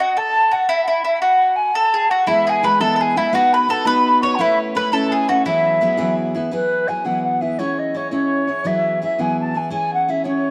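A pure, wooden baroque flute with vibrato and a soft attack carries the melody through this cheerful, lively Celtic jig excerpt in E major at 113 BPM in 6/8, joined by a bright, double-strung mandolin second line with tape echo until 6.1 s and a picked steel-string acoustic guitar with audible finger squeak that enters at 2.3 s, all set in a moderate plate reverb as the tune moves into its second section at 6.5 s.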